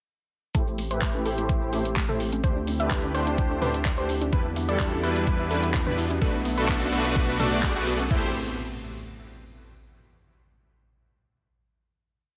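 An overdriven, knocking electronic kick sits up front in this dreamy, emotional progressive house piece, driving a four-on-the-floor pulse at 127 BPM in A dorian. Layered pop drum kit parts add programmed hats, shaker, clap, backbeat and crash, while tape-warm electronic congas and toms run a tribal loop in the background. Up front, a smooth, detuned supersaw plays dotted-rhythm chord stabs through a filter sweep. A mellow, round pluck repeats a sixteenth-note riff over a pedal note with its own filter sweep, and a thick, saturated sine sub bass holds the roots under a long-release analog pad. The whole piece builds from 0.5 seconds over Am7, D7sus4, Em7 and Bm7 with sidechain pumping, as a very quiet riser and impact enter at 4.5 seconds, before everything settles on a final Am7 chord at 8.1 seconds inside a moderate digital room reverb.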